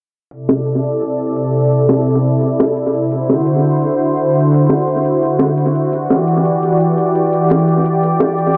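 A straight 4/4 pulse at 171 BPM drives this warm liquid drum and bass fragment in C lydian, where a very quiet, bright electronic hi-hat and tight, high-tuned bongos with hard hands and tape echo sit beneath an up-front, thick sawtooth unison pad whose detuned, warbling chorus carries sustained C6, D9 and Em9 chords, all bathed in spring reverb, echo and a low-pass filter sweep across the 8.6 seconds.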